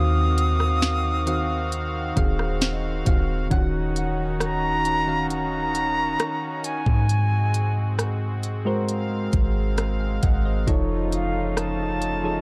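A late-night, moody slice of contemporary R&B opens with an airy concert flute carrying the melody over soft, rounded electric-piano-style synth keys thickened by chorus, while a pipe organ's shimmering celeste string stops hold sustained chords beneath. A deep, sine-like 808-style bass sits up front from the start. A bell-like celesta with felt-hammer delicacy rings with delay in the background until 4.4 seconds. The smooth, electronic drum kit arrives at 0.4 seconds, with a knocking kick, sharp snare, crisp hats and rim clicks. The close-miked flute sings with vibrato and its own delay through a slow harmonic drift from Ebm69 and Ebm9 to Ab9, landing on a tense F7alt near the end of this cut from a longer piece. The production is dark and dry, with lossy compression artefacts.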